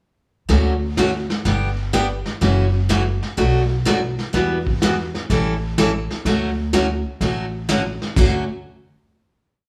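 Cheerful and swinging, this short, complete western swing piece has a small trio enter together at 0.5 seconds, with a boxy, parlour-style picked steel-string acoustic guitar picking four-to-the-bar rhythm over a woody, thumpy pizzicato upright bass playing a two-beat root-and-fifth line. A lo-fi vintage brush drum kit with muffled, dark cymbals and a punchy kick keeps a brushed backbeat with sweeps on the snare. The band sounds like it is playing live in one room with moderate large studio reverb, moving through a jazzy chord cycle before settling on a final chord at 8.2 seconds.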